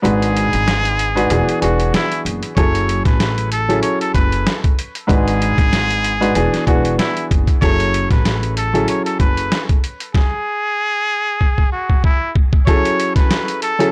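Reflective and dark, this boom-bap hip-hop passage, cut from a longer piece, moves at 95 BPM in F# minor with a light swing on the sixteenths. A muted trumpet carries the melody up front, its straight mute giving a nasal, clear tone with vibrato and a jazz-style solo feel, touched by analog delay. A woody upright piano sits equally forward, supplying accompaniment through a cycle of G#m7b5, E7 and F#m7 before the harmony drops out at 10.1 seconds and returns on F#m7. Underneath, a pizzicato upright bass with steel strings adds a warm, saturated low end until it stops at 9.5 seconds. The sampler-style drum kit, compressed and pitched down, is the loudest part, with a thumpy kick, medium-tuned snare and hi-hat, and a fill from 11.4 to 12.7 seconds leads into a brief new section. The whole is dry and gritty, like a hardware recording with little reverb.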